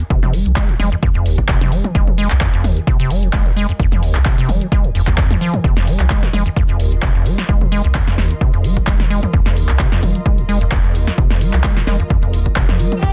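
A driving 130 BPM acid house groove in 4/4 with a light swing on the sixteenths sets a trippy F minor mood, as an overdriven, punchy kick sits up front beside a dry analog drum machine of snare, handclaps, hi-hat, toms and crash, while a squelchy, resonant square-wave acid bass riff runs through tube saturation and delay under a long filter sweep, a deep sine sub bass pumps beneath, an ethereal, detuned pad fades in softly in the background with chorus and reverb, and a dark bowed string section touches a single G4 at 13.0 seconds just as this excerpt is cut from a longer piece.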